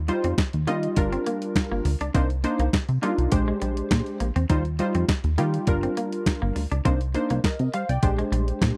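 A plucky analog bass opens this short cut of early-eighties boogie funk at 0.0 s, its punchy sawtooth and pulse-wave tone shaped by a filter pluck and a moving notch, dark and decaying as it sits up front between G1 and Eb3. Almost at once a crisp 8-bit digital drum machine joins with a thumpy kick, fat snare and hi-hat, its sampler-style sound re-recorded in a small room and placed up front. A funky polysynth comp of detuned sawtooth and square waves adds mellow, sustained chords treated with chorus, while an electric guitar at the edge of break-up plays a fingered, twangy riff between G3 and Eb4 with a subtle chorus. The harmony cycles twice through Eb69, Gm7, Cm9 and Bb13 in Eb major at a straight 102 BPM in 4/4, giving a smooth, danceable groove. The dry, close studio sound, carrying little reverb, keeps the parts tight and present until the cut ends around 8.8 s.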